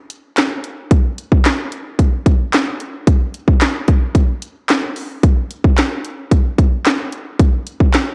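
Pop at 111 BPM in a straight 4/4, this bittersweet yet energetic clip from a longer piece features only an up-front, overdriven electronic house drum kit of punchy kick, cracking snare, hi-hat and handclaps, entering at 0.1 seconds and running to 8.1 seconds under light reverb and the worn, warbly pitch drift of old cassette tape.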